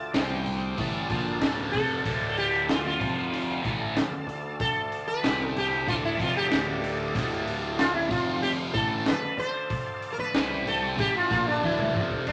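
A buzzing, shimmering sitar opens this trippy, mysterious psychedelic rock excerpt, carrying an up-front solo over a background haze of overdriven tonewheel organ chords swirling through a slow rotary speaker and a resonant, overtone-sweeping drone on a low D with chorus, phaser and reverb. A double-tracked fuzz guitar riff with distortion and phaser, round overdriven fuzz bass and a crunchy, saturated breakbeat kit with a punchy kick, high-tuned snare and dark cymbals drive the steady 4/4 groove, while very quiet congas sit underneath. The harmony cycles between D minor and power chords on C and F in a moderate club reverb, and a drum fill closes the passage at 11.6 seconds.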